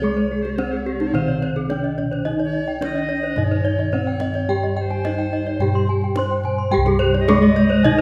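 This eight-second excerpt of Balinese gamelan moves at 108 BPM in a straight 4/4 and sits in C pelog, with a shimmering, brilliant mood throughout. A bronze metallophone struck with a wooden mallet carries the melody, close and dry, its paired tuning producing shimmering beats. A tenor recorder adds a second line above it, bright, airy and reedy with vibrato and a soft attack. Two more metallophones ring out arpeggios in the upper register: one is close and dry, and the other sounds boxy, as if in a small room, and drops out at 7.8 seconds. Beneath them, a darker, smoother metallophone played with a horn mallet holds the accompaniment in the background, while bossed gongs hit with padded beaters give a round, mellow bass up front. A tight, band-limited kendang with a vintage tone joins at 0.2 seconds with hard hands behind the ensemble, and a moderate stage reverb frames the whole.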